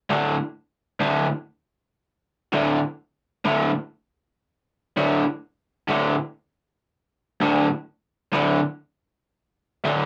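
Rock with a raw, menacing mood: a lone overdriven electric garage guitar, bright, picked and double-tracked, sits up front in the low register over a moderate booth ambience, with the rough feel of a rehearsal-room recording cut from a longer piece.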